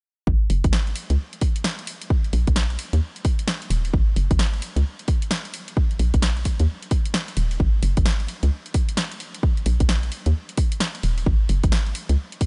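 A swung two-step garage groove at 131 BPM bounces through this late-night excerpt, with a punchy, layered electronic kick up front from 0.3 seconds and a house drum kit adding hi-hat and a punchy snare from 0.5 seconds. A hollow, knocking FM bass with a fast attack and decaying tail carries the low end, its dark tone roughened by tube saturation, before dropping out at 12.2 seconds. The mix is dry, with a rounded top end.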